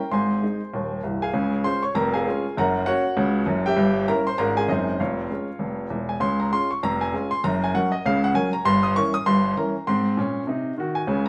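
A stone room's reverb, lingering for about 1.2 seconds, surrounds a clear, intimate baby grand piano heard up front, its action noise audible and its notes holding a long, natural sustain. This playful, exuberant stride jazz piece swings in 4/4, with the solo piano ranging from C1 in the bass up to Eb6 across two matching passages, the second beginning at 6.2 seconds. Colorful chords such as Gdim7 and Ab7/Gb pass by before the cut ends at 11.3 seconds.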